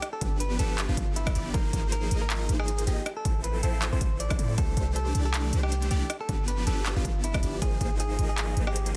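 A clean electric guitar, recorded direct, opens this euphoric future bass passage in a picked, compressed melody, its delay and sidechain pumping riding alongside a trap drum kit of handclaps, rim clicks and crisp hi-hats set in studio reverb. At 0.2 seconds a huge, lush wall of detuned sawtooth supersaw chords arrives, glossed with phaser and pumping against the beat, while a deep, boomy 808-style bass with a sine body and a noise layer sits up front underneath. A punchy, layered electronic kick enters at the same moment, giving the half-time groove its weight, and drops out at 7.9 seconds. The swung feel and the harmony moving through G7, Ab69, Fmaj7/A and C69 give the section a bright, lifting quality. The mix is dense and heavily limited in a modern style, dry overall, and the passage is cut from a longer piece.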